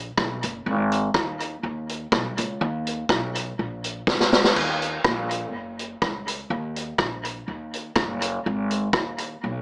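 A street-band drum kit with a high-tuned snare, boomy kick, rim clicks, hi-hat and crash sits up front with dub echo, driving this energetic, mischievous ska cut in Eb minor at 123 BPM, with a drum fill from 4.1 to 4.6 s, while a woody, thumpy pizzicato upright bass on gut strings rumbles darkly low beneath it, all in a moderate club reverb with a small-speaker sound.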